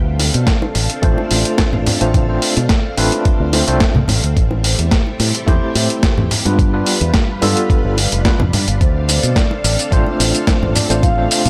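A lush string machine opens this sleek, groovy nu-disco excerpt with sustained chords, its ensemble chorus, vintage sampler grit and sidechain pumping giving the pad a mellow sway beneath a bright, punchy fingered electric bass shaped by an envelope filter. Within the first second a dusty soul sampler-style kit arrives with hi-hat, shaker and a medium-tuned snare, joined by bongos and congas played with soft hands in the background and a thumpy electronic kick, both drum parts compressed, overdriven and up front with studio ambience. At 1.0 seconds an overdriven tine electric piano enters through a combo amp, its barky tone shimmering with fast tremolo as it comps through a progression that moves from Dm7 to Am7, G7 and back to Dm7. At 8.8 seconds a soft, round, octave-layered synth lead slips in with a melody in the background, dark and rounded with chorus, phaser and vibrato. The overall sound is dry and gritty, like a hardware recording with little reverb, and the passage is cut from a longer piece.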